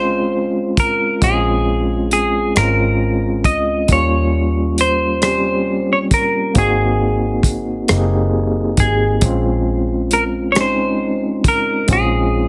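A slow, sultry late-night R&B groove in six-eight at 45 BPM and in Bb minor opens with a bright, clean semi-hollow electric guitar carrying the melody through slapback echo and plate reverb, over a gritty, barky electric piano shimmering with fast tremolo and a round, foam-muted electric bass, before a dry, tight-kicked soul drum kit of hi-hat, kick and rim click joins at 0.8 seconds, all squeezed into a heavily compressed, radio-like sound as the chords move from Bbm9 through Eb13 and Ab9 and back to Bbm9.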